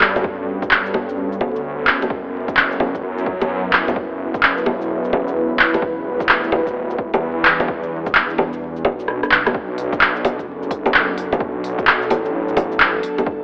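Future garage at 129 BPM in B minor, this wistful, melancholic cut from a longer piece rides a swung 4/4 groove through a lush hall, coloured by vinyl crackle and a narrow telephone-like tone. An airy, breathy pad holds sustained chords from F#3 to B4, its slow attack and long release softened by chorus, a noise layer and a moving notch, while sidechain pumping makes it breathe with the beat. Beneath it, a menacing detuned saw bass spanning D1 to G2 swells through its filter with tube saturation, evolving and pumping in step with the pad. Up front, a deep house kit of bongos, handclaps, smooth hi-hats, rim clicks and shaker carries the groove, joined from 0.2 seconds by a punchy, layered electronic kick, both re-recorded in a small room. The harmony moves from Gmaj9#11 through F#7sus4 to Em7, and a drum fill at 9.1 seconds leads into a new section that settles on Bm7.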